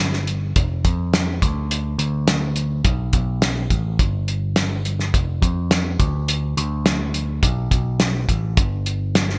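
The recording has a bright digital production in a 1980s style, with a light reverb over the mix. This short cut from a longer folk rock and heartland rock piece feels nostalgic and jangly, moving in a straight 4/4 through a single section. A cloth-damped, thuddy acoustic drum kit enters at 0.1 seconds and sits up front, with a fat snare, a tight kick and hi-hat. The kit is saturated and gritty, with a rolled-off top, a small-room character and a gated reverb on it. Underneath, a picked electric bass plays from the very start, amped and warm, ranging from F1 to F2 and sitting forward alongside the drums until the cut ends at 9.4 seconds.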